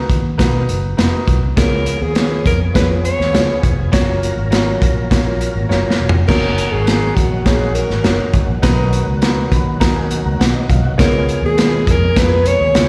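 A straight 4/4 groove at 102 BPM drives this joyful, uplifting 1960s-style soul cut in F# major, where a crunchy, saturated breakbeat kit with a punchy kick sits up front over a round, foam-muted fingered electric bass and an open baby grand piano with slapback echo, before a breathy, close-miked alto saxophone with subtone and vibrato takes the melody at 1.6 seconds alongside a thick, overdriven tonewheel organ on fast rotary speaker in the background, with a drum fill at 5.7 seconds and a piano fill at 9.2 seconds, all heard as a live gig through the venue's PA in recital hall reverb.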